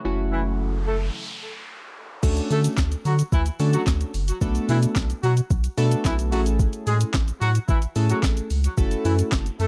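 A dark, dry production carries this summery, upbeat dance-pop passage at 110 BPM, cut from a longer piece and moving through F#m7, Dmaj7, Bm7 and Amaj7. Round square-and-sawtooth analog keys with chorus and a deep sine sub bass pulse with sidechain pumping, while a detuned sawtooth pad sits briefly in the background and an electronic noise sweep runs through the stop into the drop. A clear horn section with light vibrato and octave doubling carries the melody through a low-pass filter and digital delay from 0.3 s, and at 2.2 s the drop arrives with an up-front, tape-warm electronic R&B kit of soft kick, sharp snare, warm hi-hats, shaker, handclaps and crash.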